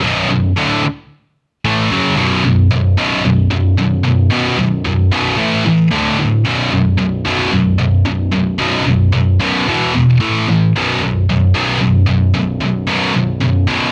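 A scooped, high-gain electric guitar carries this short metal excerpt entirely on its own, picked and double-tracked, and placed up front. Its distorted tone is bright, ranging from B1 up to A3, while the overall production sits dark under a light reverb. At 112 BPM in a straight 4/4, the mood is relentless and dark, rooted in B minor. The opening rests on a B minor chord before the riff shifts at 2.2 seconds into power-chord movement through B5, A5 and D5, then returns to B5 and passes through E5 and A5 before landing back on B5 near 10.7 seconds. Cut from a longer piece, it runs about 13.9 seconds.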